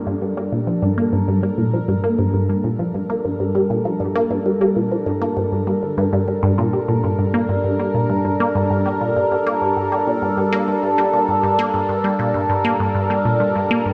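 A straight 4/4 pulse carries this short cut from a longer piece of ambient, sequencer-driven space music, with an expansive, mysterious mood that stays on a single minor chord throughout. A sweeping resonant pad holds sustained chords from the opening moment, its detuned sawtooth and triangle tones wave-folded and bright, with a slow attack, a filter swell and a long release, all colored by chorus, phaser and shimmer reverb. Just after, at 0.1 seconds, a resonant blip pluck enters with a lower riff, juicy and squelchy, its fast attack and short decay given an edge by ring modulation, with phaser and analog delay trailing behind it. Both parts sit up front in the mix and play together until the end at 13.9 seconds. A wet concert hall reverb, with a 2.3-second decay, surrounds them and gives the piece its spacious, floating sound.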